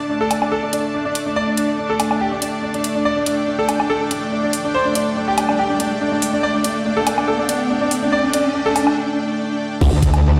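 Heavy and aggressive, this half-time wobble dubstep fragment at 142 BPM spends nearly all of its length building up, with a lush, detuned supersaw pad pumping under sidechain while a brilliant grand piano carries the melody through digital delay and a layered drum kit of metallic hats, crash cymbal and woodblock ticks along behind. An electronic riser enters in the background at 5.2 s and runs into a brief break at 9.0 s. At 9.8 s a knocking electronic kick lands with a saturated, formant-filtered growl bass, handing off to an up-front metallic FM wobble bass on D2, all set in a lush hall reverb within a bare stone room.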